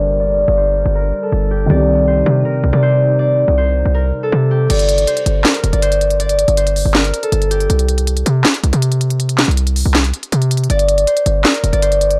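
A dry, gritty hardware recording with little reverb carries this brooding, melancholic trap excerpt in G minor, set at 160 BPM with a half-time feel. A fingerpicked concert harp rings up front with the melody throughout, while a hard-hitting 808-style bass anchors the low end: punchy and heavy, with a fast attack and a decaying sine tone layered with noise. For the opening 4.7 seconds, two parts move through Gm and Cm under a filter sweep: a dark, boxy grand piano with short sustain, and a glassy, ethereal FM pad sitting in the background, thickened by chorus and its own reverb. At 4.7 seconds the piano and pad drop away and an electronic trap kit enters up front, with a sharp snare, crisp hi-hats, handclaps and crash cymbal. The harmony thins to bare G power chords, with a chordless stretch in the middle before the passage is cut at 12.2 seconds.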